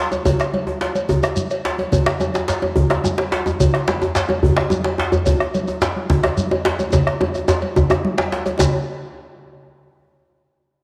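Bathed in a wet echo-chamber reverb, this festive, powerful West African traditional drum ensemble piece, cut from a longer performance, moves at 144 BPM in a straight 12/8 with bright, thin-skinned congas, a metallic cowbell, a grainy, mellow shekere kept close and dry, a deep, dark bombo sitting in the background and an up-front, medium-tuned djembe with metal rattles played with hard hands, joined at 2.1 seconds by a second up-front, medium-tuned djembe also played with hard hands, before a drum fill arrives at 6.9 seconds.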